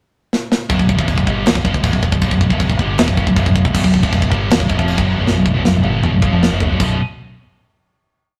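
A scooped, high-gain electric guitar dominates this short, complete heavy metal piece in B minor, hammering out a distorted, double-tracked power-chord riff up front from 0.7 seconds. A growling, overdriven electric bass doubles that riff with driving eighth notes, its bright, amped tone sitting low beneath the guitar. A tight metal drum kit, mid-forward with a medium-tuned snare and a tight kick, opens with a fill at 0.3 seconds and settles into a half-time metal groove, with china and crash cymbals alongside the toms. At 157 BPM in straight 4/4, the mood is relentless and aggressive, and a second drum fill from 5.3 seconds drives into a final B5 chord at 6.8 seconds. The sound is a rough rehearsal-room recording with a moderate stone-room reverb that lends a raw, reverberant edge.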